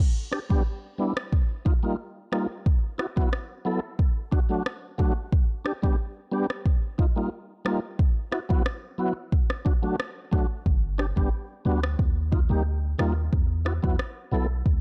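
A straight 4/4 dancehall groove at 90 BPM in G major carries this summery, bouncy excerpt, with an up-front afro-pop drum kit of deep kick and rim click roughened by vintage 12-bit sampler grit, a smooth tonewheel organ with chorus vibrato, key click and a stopped rotary speaker cycling G, Ebadd9, Esus2 and D, and a boomy, sine-based 808-style bass entering at 10.7 seconds, all set in a dark digital ambience.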